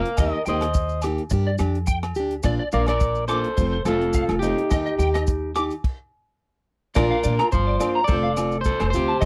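Joyful and warm, this highlife guitar-band fragment swings lightly in 4/4. A twangy, slightly broken-up electric guitar carries the melody up front over a picked, plugged-in steel-string acoustic guitar with audible finger squeak, while a second, brighter electric guitar plays high arpeggios coloured by ensemble chorus and slapback echo. A woody pizzicato upright bass sits forward, a tight, dry funk kit with bright cymbals drives the groove, ringing agogo bells murmur in the background, and grainy, mellow maracas add texture to a close, dry 1970s-style studio sound, with a stop from 5.8 to 7.0 seconds before the band resumes.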